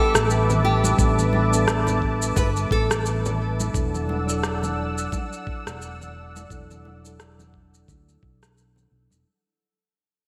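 Congas, an electronic rim click and shaker set up a swung 16th-note groove at 87 BPM in 4/4, with a thumpy, compressed electronic kick joining at 1.0 seconds in this wistful sunset chillout fragment cut from a longer piece. A round, punchy fretless bass with tube saturation anchors the low end, while the congas ring softly far back in the mix and the layered rim click and shaker carry gated reverb. A mellow, clean tine electric piano plays the accompaniment through a low-pass filter and digital delay, with a filter sweep running across the whole passage. Above it, a thick, warbling sawtooth unison pad holds sustained chords with chorus as the harmony moves from A9sus4 to E9sus4 at 3.7 seconds. A bright, full-bodied fingerpicked nylon-string guitar offers a brief melody with subtle chorus and delay until 3.4 seconds, all set in a lush hall reverb with bright 1980s-style digital production and a fade-out across the passage.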